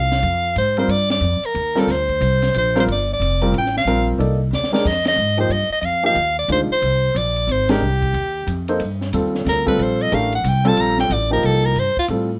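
A bright, vibrato-laden soprano saxophone leads this intense yet cool modal jazz waltz in G minor at 182 BPM with a swung 3/4 feel, backed by a woody pizzicato upright bass, an intimate grand piano with audible action noise and deep low end, and a dark, compact cocktail drum kit with a punchy kick and high-tuned snare, all in light reverb, with band accents, a short drum fill and a saxophone solo from 8.8 s in this section cut from a longer piece.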